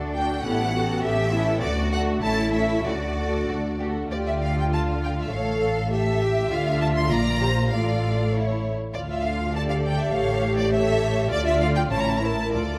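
Spirited and graceful, this quick classical-period movement for string orchestra moves at 100 BPM in 2/4 with a rubato feel, opening in D major before turning to D minor at 4.1 seconds, in a fragment cut from a longer piece. An up-front, focused violin section carries the melody in its upper range, while a second violin section with a smooth top supplies the second line, a distant, even viola section provides accompaniment, and a lush cello section and a light-vibrato double bass section anchor the bass. The ensemble sits in a wet recital hall reverb, and the minor passage leans on A7 and B-flat chords before settling on A at 11.9 seconds.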